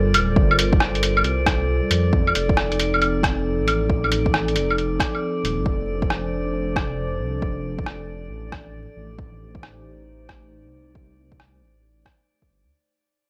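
A dry, gritty recording dusted with vinyl crackle frames this rainy, melancholic, swung future garage excerpt, where a warbling, nostalgic tape-like pad holds sustained chords with sidechain pumping beside a dark, rumbling detuned saw bass that pumps too, a faint glassy texture of drifting overtones hovers high above, muffled, pitched-down sampler-style drums play claves, hi-hat and rim click up front, and an overdriven, deep electronic kick sounds as if re-recorded in a large room, while the whole passage fades out over its 12.7 seconds.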